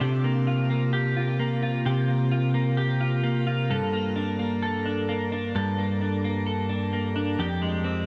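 Floating and ethereal, this short dream pop passage is cut from a longer piece and moves in a straight, unhurried 4/4. A single clean electric guitar carries it alone, picked and compressed, sitting up front in the mix with a dark tone that spans from F2 up to A4. Analog chorus and digital delay thicken each note. A moderate shimmer reverb with a long 5.1-second tail adds a glowing haze around the guitar. The harmony drifts from C7sus4 to Gmadd9 at 3.7 seconds and then to Fmadd9 at 7.4 seconds, all within a warm, shadowy production.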